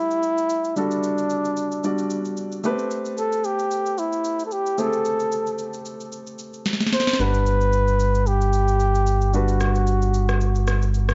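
A bucket-muted trumpet, dark and veiled with light vibrato, plays a classical-style solo melody up front through digital delay, over a baby grand piano with short sustain whose chords move from Gmaj7 to Am9 in G major. Electronic shaker, sharp snare and rim click, re-recorded in a large room, set a relaxed amapiano groove at 112 BPM with a light 16th-note swing. After a drum fill at 6.7 seconds, a deep, full sine sub bass arrives at 7.2 seconds as the harmony returns to Gmaj7, closing this warm cut from a longer piece, all set in a digital ambience with a softened top end.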